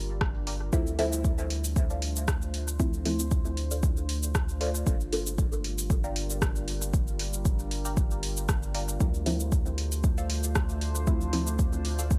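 An up-front, tape-warm electronic kick anchors this cavernous, hazy dub techno excerpt at 116 BPM in D minor, alongside a small-room deep house kit of cabasa, hi-hat and rim click, a round, wave-folded analog bass that pumps with the sidechain, two muted, sawtooth filtered dub chord stabs, one high and detuned and the other nasal with a moving notch (heard from 0.7 to 5.4 seconds and again from 9.0 seconds), both soaked in dub echo and phaser under a filter sweep, and a dark, slow-blooming ambient pad with chorus and its own reverb, all moving between Gm7 and Dm7 in an otherwise dry mix.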